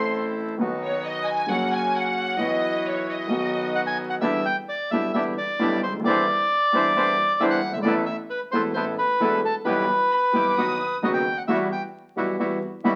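A rubato tango in 4/4 at 133 BPM, tense and melancholic, moving into E minor at 4.2 s. A focused, vibrato-rich violin section carries the opening line before the reedy, close-miked bandoneon melody takes over from 3.8 s, while a second bandoneon adds full, dry stabs and a dark concert grand piano supplies mellow, deep-bass accompaniment. The violins return briefly at 10.1 s, and the whole fragment sits in a wet studio reverb under the crackle of a very old 78 rpm record.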